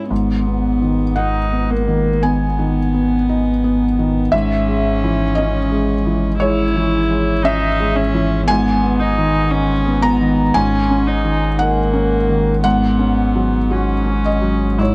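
Neoclassical piano and strings in G# minor, this fragile, longing fragment moves at a slow 57 BPM in 4/4 with a rubato feel, cut from a longer piece. A felt-muted upright piano carries the accompaniment from 0.0 s, its mellow, intimate tone close up front, with the soft knock of its action audible beneath the notes. Alongside it a single viola, played sul tasto with a soft attack, adds a dark, floating line in its middle register, pure and smooth at the top. A sine sub bass holds a deep, clean G#1 from 0.1 s, sustained as a steady foundation under the harmony. The chords drift from G#m through C#m/G# and D#m7/G# to a closing F#sus4/G#, all over that held G#, and a light reverb gives the small ensemble a gentle sense of space.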